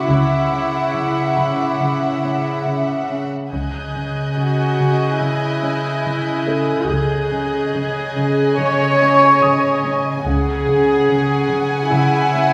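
Heard from further back in a wet scoring stage with a 1.7-second reverb, this cut from a longer cinematic suspense score unfolds at 71 BPM in 4/4 in C# minor, tense and mysterious. Bowed sul tasto strings with soft attacks carry it: a rich, up-front viola section plays the accompaniment, while a dark, intimate violin section with vibrato takes a lush second line above. Underneath, a warm cello section and a warm double bass section hold the bass on low C#, and a dark cello section with light vibrato plays a riff in the background. A floating, pure high violin section adds texture until 9.8 seconds, alongside a vintage grand piano, smooth and placed in the background. The harmony moves from Esus2 over C# to C#madd9 at 3.5 seconds, then to Eadd9 over C# at 10.3 seconds.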